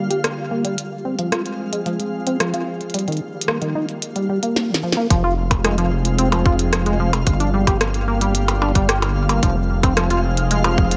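IDM with an eerie, glitchy mood in this short passage cut from a longer piece, where a warbling, lo-fi pad sustains mellow chords in the background beneath rubbery acid bass arpeggios carrying a filter sweep, tape echo and chorus, a sparkling granular texture, and a clicky, delayed drum kit whose fill at 4.6 seconds leads into a section at 5.1 seconds where a rumbling, detuned saw bass and a tight electronic kick drum arrive up front.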